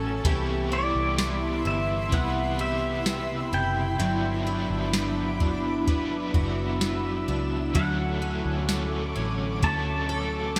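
A soft vintage rhythm box sets a straight, unhurried 4/4 pulse from 0.2 seconds, its deep kick, crisp snare, metallic hats and tambourine overdriven and gated, while a dark, foam-muted fingered bass sits round and up front in this floating, blissful dream pop passage. An octave-doubled twelve-string acoustic guitar picks shimmering arpeggios through analog chorus and delay, a double-tracked overdriven electric guitar adds compressed accompaniment with tremolo, and an ethereal, detuned pad holds sustained chords over Cmaj7, Gmaj7 and Dmaj7. From 0.7 seconds a clean pedal steel guitar, played with fingerpicks and slide, carries the high melody through delay, framed by a moderate plate reverb and a bright 1980s-style digital production.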